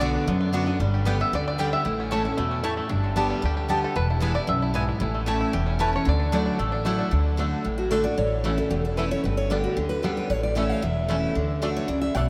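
A twangy, fingerpicked five-string banjo leads this rustic, lively bluegrass cut at 228 BPM in D major, soloing through the first 7.1 seconds over a full-bodied dreadnought guitar accompaniment, a growly, thumpy upright bass up front, and woody mandolin stabs with slapback echo that drop out at 7.0 seconds, before a bright, fresh-stringed second acoustic guitar picks up a melody from 7.8 seconds, with a huge ambient reverb placing the sound in a vast, echoing space.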